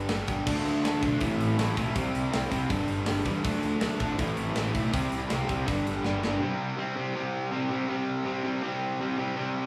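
Upbeat and rebellious, this punk rock fragment, cut from a longer piece, drives along at 162 BPM in a straight 4/4 in C major. A distorted electric guitar sits up front with a bright, double-tracked riff, joined by a growly fuzz bass with overdrive and a tight metal drum kit whose crash, hi-hat, kick and medium-tuned snare carry bright cymbals and a tight kick. Tucked in the background, a second, compressed fuzz guitar adds its own riff from 0.5 seconds, moving through a cycling Dm, Am, C, G progression. A drum fill at 6.0 seconds closes the opening stretch, after which the bass, drums and fuzz guitar drop away. The distorted guitar carries on alone on a C5 power chord until 9.7 seconds, all of it set in a moderate studio reverb that gives the feel of a band playing live in one room.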